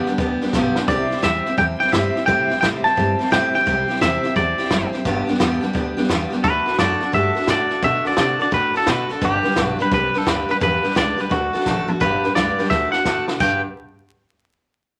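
Vinyl crackle and a moderate club reverb frame this retro, upbeat rockabilly passage, cut from a longer piece and swinging at 172 BPM in G major. A bright picked steel-string acoustic guitar opens the accompaniment up front, joined almost at once by a woody, thumpy pizzicato upright bass on gut strings and a dry, natural compact cocktail drum kit with dark cymbals, a high-tuned snare and a punchy kick, which plays a fill at 0.5 s and more fills near the close. From 0.9 s a clean, compressed, twangy electric guitar carries the melody at the forefront over chords moving among G, C and D.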